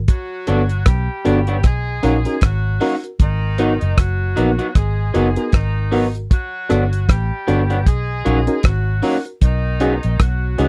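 A dark, round, foam-muted fingered bass opens this smooth, romantic lovers rock reggae cut at 0.0 s, joined a moment later by a cloth-damped, thuddy drum kit with a tight kick, rim clicks and hi-hat sitting up front, and an edgy saxophone section playing a vibrato-laden second line. From 0.5 s, a mellow FM electric piano with tremolo and a noise layer fills in the accompaniment, while a bright, twangy, slightly broken-up, lo-fi electric guitar through a small old amp adds picked stabs over lush major-seventh and minor-seventh changes. The sound is dry and close, with the intimate feel of a 1970s studio, in a swung groove taken from a longer piece.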